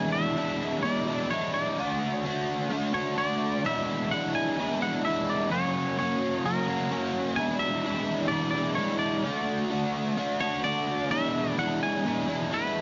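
Blissful yet wistful, this short rock excerpt in a straight 4/4 pairs a biting, overdriven, double-tracked guitar riff, up front and shimmering with analog chorus, with a clean, compressed, twangy electric guitar melody trailed by analog delay, all over an E7, D and F# progression in a dark, warm production with light reverb and digital ambience.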